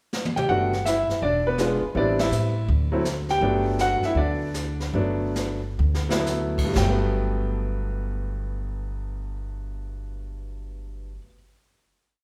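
Heard in the wet reverb of a recital hall, this short, sophisticated and playful jazz piano trio piece swings, opening with a brushed drum fill at 0.1 seconds before the distant, roomy kit settles into snare sweeps, dark cymbals and a boomy kick. Up front, the woody, growly pizzicato upright bass plays a two-feel line while the clear, smooth grand piano, vintage in tone with deep lows, spins a motif-based melody partly doubled in octaves over syncopated, rootless comping. The band hits an accent at 2.1 seconds, then gradually slows down before settling at 6.8 seconds onto a long final chord held by piano and bass.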